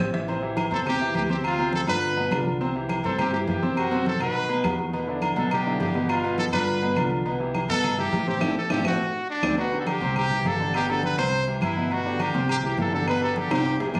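A straight, danceable 4/4 salsa groove drives this sunny fragment, with woody claves and damped, soft-handed congas in the background, ringing metal-shell timbales and agogo bells, a growly, thumpy pizzicato upright bass and a clear, intimate baby grand piano with audible action noise, while a punchy trumpet with vibrato leads up front through plate reverb from 0.7 s, the band hitting an accent at 8.4 s and a drum fill leading into a new section at 9.6 s, the whole heard as if recorded on a phone in the room.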